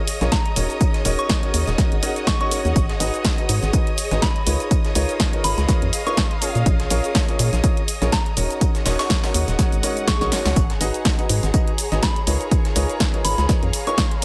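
Piano house at 123 BPM with a swung sixteenth-note feel, soulful and bittersweet, cut from a longer piece and moving through minor seventh chords that turn on a C#13. A woody, polished upright piano carries the riff from 0.2 s, over a hollow, organ-like FM bass that sits up front, both pumping with sidechain. The kick is dry and punchy, joined by an analog drum machine's snare, hi-hat and shaker, while a gritty, pitched-up breakbeat kit with a high-tuned snare and tambourine sits in the background, re-recorded in a large room and high-pass filtered. A lush, distant violin section holds sustained chords with vibrato, and a dark chamber string ensemble adds soft-attack texture, both pumping with sidechain. A soft synth bell plays a gentle, mellow melody through chorus and digital delay, an electronic swell appears in the background at 9.8 s, and a drum fill follows at 10.2 s, with the mix set in a light reverb.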